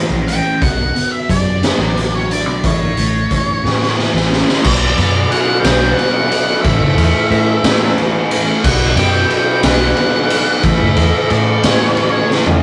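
A gritty, up-front garage drum kit with a punchy kick, high-tuned snare and dark cymbals drives this dark, hypnotic psychedelic rock clip in B minor, moving at 60 BPM in dotted quarters of 6/8, with fills at 3.6 and 12.3 seconds. A double-tracked fuzz guitar riff with phaser and a foam-muted picked bass carry the low end, while an octave-fuzz lead guitar with wah sings a high melody. A buzzy vintage combo organ with light vibrato slips in very quietly on sustained chords at 4.7 seconds, all captured in a rough rehearsal-room sound with saturation and moderate reverb.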